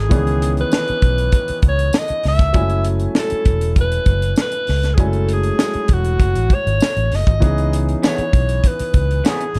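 Smooth and silky, this short excerpt of 1970s-style soul moves in a straight 4/4 over a C#m7 to F#m7 progression, returning to C#m7 near the end. A warm alto saxophone carries the melody in a solo pop style, its vibrato and smooth top floating above a natural-sounding concert grand piano whose accompaniment reaches into deep bass. The foam-muted fingered electric bass is round, punchy and up front, and a tight funk drum kit recorded in a small room, with a high-tuned snare, tight kick and hi-hat, sits prominently alongside it. A jingly tambourine lingers in the background from about 0.7 seconds. At 8.0 seconds a lo-fi electric guitar through a small old amp adds a slightly broken-up, compressed riff coloured by lush chorus, all within a dark production bathed in studio reverb.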